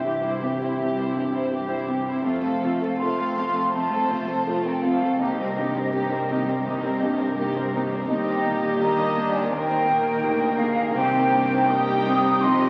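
The whole ensemble sounds from the start of this hopeful, moving cinematic score at a rubato 82 BPM in 4/4. Dark, close violins carry the vibrato melody sul tasto in the background, while a distant, floating symphonic violin section and a mellow, crisp-edged flute ensemble weave second lines above violas, an intimate grand piano with audible action noise, and soft-attack cellos and a rich double bass section. The harmony moves from C to F, Cm7 and Eb, all bathed in wet scoring-stage reverb and the crackle of a very old 78 rpm record, before the cut ends at 12.7 seconds.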